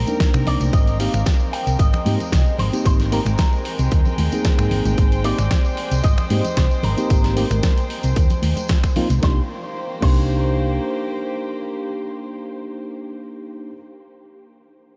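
Up front sits a punchy, overdriven electronic kick, with a light digital ambience around this sleek, cosmic nu-disco excerpt and its gently swung sixteenths, as a dusty sampler-style kit (gritty fat snare, hi-hat, finger snaps and crash) plays alongside close, dry tambourine and soft-handed congas. A round, amped hollow-body fingered bass and a mellow tine electric piano with diffuse ambient delay move between Cm7 and Abmaj9, while a distant, reedy violin section holds dark sustained chords with sidechain pumping. On top, a bright, twangy picked electric guitar with an envelope filter, analog chorus and delay carries the melody, and the percussion, drums and bass drop out between 9.2 and 10.8 seconds, leaving strings, keys and guitar for the final bars.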